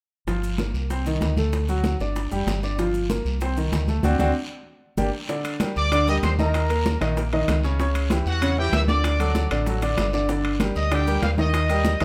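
A fiery, passionate salsa excerpt opens with a clear, up-front grand piano and a dark, punchy fingered electric bass over background congas, bongos and maracas and a raspy guiro, and after a band accent and drum fill, ringing timbales arrive at 5.4 seconds before a brilliant trumpet section with light vibrato carries the melody from 5.8 seconds, set in light reverb.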